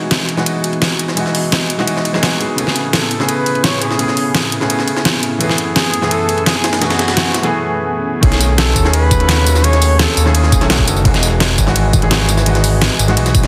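A dense, heavily limited modern mix with moderate plate reverb opens on a clear, polished baby grand piano with dub echo over an airy, breathy pad in the background, setting a dreamy, lush liquid drum and bass groove at 170 BPM in 4/4, moving from Emaj9 through Amaj9 and F#m11. Two overdriven drum kits drive the build-up, a gritty, pitched-up jungle sampler-style kit in the background and an up-front pop kit with a deep snare and tambourine, while a vintage flugelhorn carries the melody with vibrato and delay from 2.9 to 10.9 seconds. After a short break, the drop lands at 8.2 seconds on B13, bringing in a smooth, saturated synth bass up front and a knocking electronic kick before the harmony returns to Emaj9.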